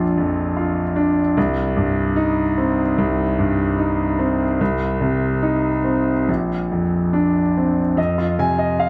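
Reflective and wistful, this short excerpt from a longer neoclassical minimalist piano piece moves at a rubato 73 BPM in 4/4, with a solo concert grand sounding from 0.0 to 8.9 seconds across a span from Bb1 to Ab5. The piano is clear and intimate, placed up front with deep bass, long sustain, a boxy character and audible action noise, colored by an analog delay. Wet studio reverb surrounds it as the harmony passes from Bb through Cm and Bbadd9 before settling on Fm7 at 8.0 seconds.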